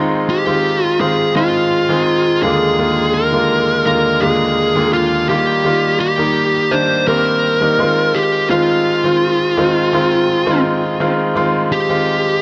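A moderate scoring-stage reverb with a 2.0-second decay gives this short pop passage, cut from a longer piece, a roomy, open sound. At 84 BPM in a straight 4/4, the mood is romantic and nostalgic. A brilliant, natural-sounding grand piano sits up front from the first moment, carrying the accompaniment from Eb2 up to Ab4. At 0.3 seconds a dark, fuzz-drenched electric lead guitar joins, picked and up front, singing the melody between F4 and C5 with distortion and delay trailing its notes. The harmony rests on an Eb bass throughout, moving from Fm7/Eb to Bb7/Eb, then Ebadd9 and Ab6/Eb, and both parts play on to the cut at 12.4 seconds.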